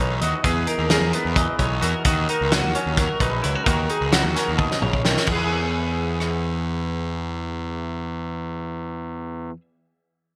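A twangy, clean electric guitar with subtle chorus, a slightly broken-up, lo-fi guitar playing arpeggios through a small old amp with analog chorus, and an up-front, fuzzy, overdriven picked bass open this playful, bright math rock and midwest emo excerpt at 261 BPM in 7/8 and E lydian, moving from Emaj9 to D#m7 before settling on E, while a loose indie drum kit with a fat snare, punchy kick and gated reverb enters at 0.2 s, plays a fill from 4.6 s and stops at 6.3 s, the whole mix sitting in a lush hall with a bright 1980s-style digital sheen.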